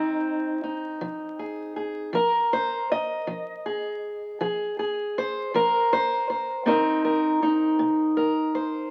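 A slow 12/8 pulse at 53 beats per minute, counted in dotted quarters with a straight feel, carries this smoky, mournful stretch of acoustic country blues cut from a longer piece. A lone fingerpicked steel-string parlour guitar plays up front, its fresh strings bright and boxy with audible finger squeak, ranging from C3 to Eb5 and moving from Fm7 to Cm7 at 6.7 seconds. Light reverb and the crackle of a very old 78 rpm record frame the 8.9-second passage.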